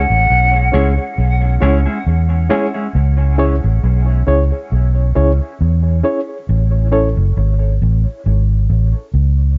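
The recording sits in a light reverb with a dark, rolled-off top end, giving this short cut from a longer reggae piece a spacious yet heavy mood. At a slow 68 BPM in 4/4 with a gentle sixteenth-note swing, it moves from C# minor to A over a break. A round, foam-muted fingered electric bass sits up front, amped and vintage in tone, and anchors the whole passage. A distant, hollow silver concert flute touches a single high note with a crisp attack and vibrato, its pure tone trailing dub echo before it drops away at 1.1 s, while a clean, compressed, mellow electric guitar adds fingered accompaniment through phaser and dub echo. A reedy, lightly overdriven electric piano enters at 0.7 s with bright stabs, shimmering with fast tremolo through its built-in speakers and echoing until it stops at 7.1 s.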